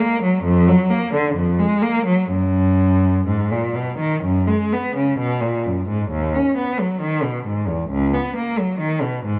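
A single bowed cello carries this serene, radiant fragment of a baroque-style suite movement in B major, its rich, smooth tone shaded with vibrato and held up front as it ranges from C#2 to C#4. The playing moves in a rubato 4/4 at roughly 62-68 BPM, tuned to A4 = 443 Hz, and shifts into a new section at 6.1 seconds before the clip ends at 9.4 seconds. Close, detailed microphones catch the instrument's even voice within a moderate scoring-stage reverb that gives the sound a gentle glow.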